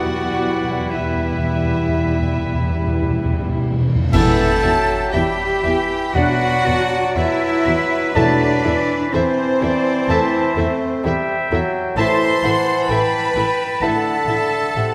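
Bathed in a wet scoring-stage reverb, this yearning, elegiac passage from a slow romantic orchestral movement unfolds with rubato as a sul tasto chamber violin section carries the melody in the background over a second violin line, a bright clarinet, a clear, distant oboe and a very quiet, mellow flute, with a roomy bassoon and soft viola accompaniment, very quiet sustained French horn chords, a dark double bass and a prominent cello section anchoring the bass, hard-mallet timpani opening with a fill, and a trumpet section entering with stabs at 4.1 seconds as clash cymbals and concert bass drum mark an accent.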